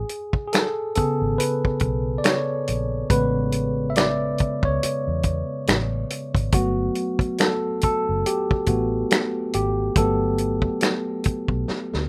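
A tine electric piano and a muted fingered electric bass open this slow, soulful neo-soul and R&B fragment, with a soul drum kit joining a moment later. The electric piano carries the lead, clean and up front through its built-in speakers, moving from an Amaj9 chord to Gmaj9 at 6.5 seconds. Beneath it, the vintage bass sits dark, round and punchy, with a foam-muted, amped tone. The dry, mid-forward kit places finger snaps, hi-hat, a medium-tuned snare and a tight kick near the front with a rolled-off top, all in a gently swung sixteenth-note groove, and a drum fill arrives at 11.7 seconds just before the cut. Little reverb and a rough home-demo mix give this sensual passage an intimate, close-up character.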